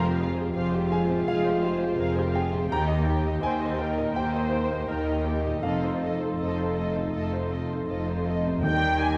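A free, rubato pulse in 4/4 carries this moving, hopeful fragment of a cinematic film score, where a veiled, con sordino symphonic violin section sings the melody over a second line from a lush, close studio violin section, with muted violas, studio cellos and symphonic double basses supporting below. An intimate baby grand piano with audible action noise sits in the background beside a dark, distant French horn section sustaining chords and a very quiet, ringing concert harp playing arpeggios, bathed in moderate scoring-stage reverb. At 8.6 seconds, as the harmony settles on Ebmaj7, a warm, roomy solo oboe and timpani struck with medium mallets join for the final moments.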